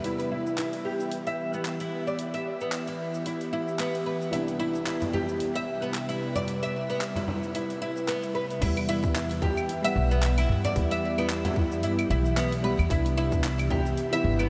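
Organic downtempo in E minor at 112 BPM with a swung 16th feel, meditative and hypnotic, where a bright, double-strung plectrum-plucked oud arpeggiates up front over Em and Cmaj7 chords, a soft felt-muted upright piano with audible action noise sits in the background with low-pass filtering, delay and sidechain pumping, an ethereal detuned pad sustains chords through ensemble chorus, and a layered deep house kit of cabasa, claves, handclaps, hi-hat and crash ticks along, joined by a deep, distant frame drum at 5.0 seconds and then by a growly pizzicato upright bass and a tight, tape-warm electronic kick at 8.6 seconds, all bathed in a huge, dreamy ambient reverb.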